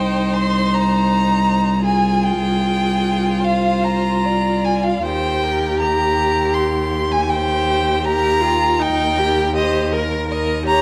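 This classical excerpt, cut from a longer piece, is a slow romantic movement for string quartet in C minor, solemn and elegiac in mood, moving in 4/4 at 68-83 BPM with a flexible rubato feel. One violin carries the melody with a rich, focused bowed tone and vibrato, while a second violin plays a smooth, even line above it and sits up front in the balance. The viola fills in the accompaniment with an even, bowed sound colored by vibrato. The cello anchors the bass with a warm, bowed tone and sits up front alongside the second violin. All four players sound together throughout the 10.8 seconds, moving from C minor through F minor over a C bass, then to C minor over E-flat, and arriving on E-flat major at 8.0 seconds. A moderate recital hall reverb gives the ensemble a sense of space around the somber playing.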